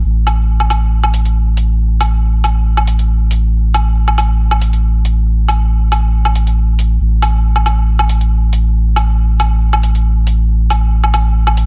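Meditative and heavy, this deep dubstep excerpt moves at 138 BPM in a half-time 4/4 feel with a light swing on the sixteenths. A soft dub sub bass, deep and round with a fast attack and sustained tone, sits up front around A1 from the start, built from triangle and square wave colours. At 0.3 seconds an electronic hi-hat and woodblock part joins, layered and produced with metallic hats and a tape-warm sheen, all in a dry, close space.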